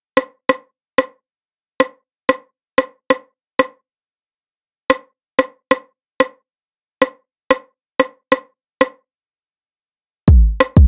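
An electronic afro-pop drum kit opens this short dancehall excerpt at 0.2 seconds, its deep kick and rim click sitting up front in a dry mix. The straight, hypnotic groove has a tough, produced edge, and a break arrives at 9.0 seconds before the drums stop at 10.9 seconds.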